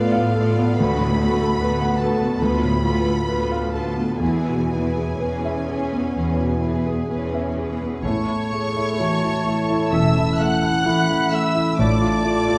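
A clear grand piano carries the melody up front in this lyrical, passionate romantic movement for piano and orchestra, its intimate tone ringing with long sustain and audible action noise. Behind it, a lush string body unfolds in A major at a rubato pace of roughly 60-77 BPM in 4/4. A violin section also carries the melody high above the keyboard with a focused, smooth top, while a second, richer violin line moves beneath it, a viola section fills in the harmony from the background, and a cello section anchors the bass. At 8.0 seconds the harmony settles from a restless passage over an E chord onto A, and the texture blooms as an airy, mellow flute, a close-miked oboe and a soft-edged clarinet add gentle second lines, a distant, dark horn section holds chords, and a double bass section deepens the low end. The viola section drops out at 11.6 seconds, and the whole is bathed in the generous reverb of a recital hall for a dark, warm overall sound in this excerpt cut from a longer piece.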